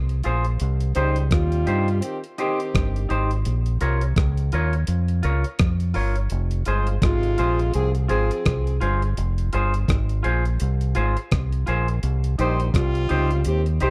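A dark, round fingered electric bass opens this hypnotic, meditative roots reggae excerpt at 84 BPM in F minor, joined at once by a gritty, compressed sampler-style breakbeat kit of thumpy kick, hi-hat and rim click, then a bright, twangy clean electric guitar with tape echo and, from 0.9 s, a smooth-topped horn section with light vibrato and its own tape echo, moving over Fm, Cm and Bbm chords in a dry, close 1970s-style studio sound.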